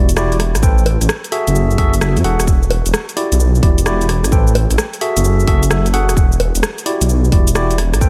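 Clean tine electric piano stabs with tape echo and a deep, rumbling, detuned saw bass open this skippy, moody two-step garage cut from a longer piece, moving through Em9, Am9 and F#m9 chords, as a house kit of bongos, warm hats, rim clicks and shaker enters at 0.1 seconds and a punchy electronic kick lands at 0.6 seconds, all under a light reverb and a swung sixteenth-note feel.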